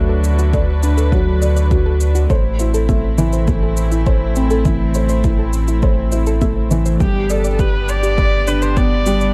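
A felt-muted upright piano carries this tender, hopeful piano-and-strings electronica passage, its intimate riff thick with felt and audible action noise and trailed by digital delay. Beneath it, a studio string section holds floating sul tasto chords with a pure, smooth top, while a round sine sub bass sits up front, thickened by tube saturation and breathing with sidechain pumping. Soft pluck arpeggios drift in the background, full-bodied and gentle, with a moving notch, chorus, delay and the same pumping. A shaker and a deep, layered electronic kick, which arrives at 0.5 s, both carry a small room's reverb and a tape-warm tone. At 7.0 s, a single woody viola takes the melody up front with vibrato as the harmony, having moved from D to Am, settles on G, all within a dusky, intimate small-room production.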